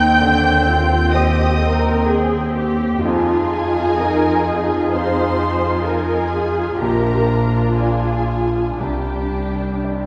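A concert hall reverb with a long tail bathes this short, bittersweet fragment of a cinematic film score, recorded in a church or concert hall. At a slow, rubato pulse of roughly 58-65 BPM in 4/4 and F dorian, a muted symphonic string orchestra plays con sordino throughout its 10.1 seconds: violins carry the high melody while a second violin line sits beneath, and violas fill in the harmony with a soft attack and smooth top. Cellos and double basses form the bowed low end, the cellos dark and lush, the basses rich and veiled. Every string section keeps its vibrato. A clear concert grand piano, natural in tone with deep bass and long sustain, supports the strings as accompaniment. The moving harmony drifts from Cmadd9/Eb through Fm7 and Bb to an open Csus2.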